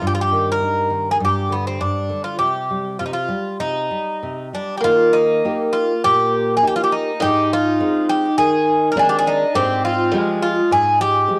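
A metallic, up-front Greek bouzouki carries the longing, mournful melody of this rubato fado-style ballad at 102 BPM in 4/4, its tone colored by cassette tape, while a full-bodied nylon-string guitar with audible finger squeak fingerpicks the accompaniment throughout. The harmony moves from C minor into Eb major at 4.8 s, where a dark, boxy twelve-string acoustic guitar enters with a shimmering, octave-doubled second line. The excerpt has the intimate feel of a home cassette recording, set in a small room with moderate spring reverb.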